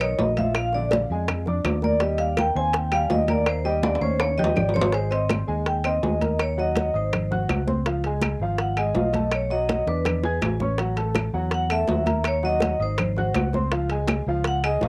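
Afro-Cuban jazz at a lively 164 BPM in Eb major, sophisticated in mood, cut from a longer piece with a vibraphone soloing throughout, its metallic, ringing tone carried by medium hard mallets, medium motor vibrato, plate reverb and analog delay over a dark, boxy upright piano with a cassette-tape character. A bright, amped fingered electric bass sits up front, while congas with a thin skin, tight high-tuned bongos struck with hard hands, ringing metal-shell timbales and woody claves in the background drive the groove, with drum fills at 3.8 and 9.7 seconds. The chords move through colourful changes such as Abadd9, Bm7 and Dbadd9, all captured as a home cassette recording in a modest booth ambience.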